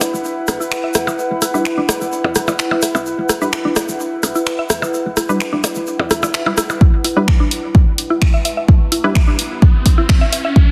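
A punchy, overdriven electronic kick sits up front once it arrives at 6.8 seconds, driving this sparse, clinical slice of minimal techno at 128 BPM in a straight 4/4. Before that, a house drum kit with finger snaps and bright hats, a grainy egg shaker and tape-tinged rim clicks and percussion blips with dub echo carry the groove, the shaker and blips stopping as the kick comes in. A woody, round FM bass pumps against the sidechain until 6.4 seconds, while a warbling, nostalgic lo-fi pad with chorus and a slow attack hangs over everything from the start. A percussive mallet-like synth pluck with cassette grain and tape echo runs as the riff, and filtered dub chord stabs, muted yet bright with a ring-modulated edge, flicker through the middle. In the background, a swell and riser build tension in the closing stretch alongside a filter sweep on the synth arpeggio, all set in a lush hall reverb and a dense, heavily limited master.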